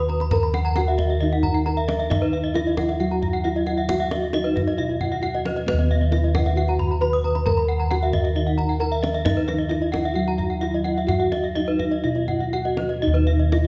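Round, up-front bronze bossed gongs anchor the bass of this hypnotic, shimmering Balinese gamelan excerpt in Eb pelog at 134 BPM in a straight 4/4, beneath a mellow, soft metallophone melody struck with padded mallets, two horn-mallet metallophones spinning arpeggios above it (one bright and airy, the other dark and smooth, each with the shimmering beats of paired tuning), and a deep, close, dry kendang, all sounding in a moderate recital-hall reverb.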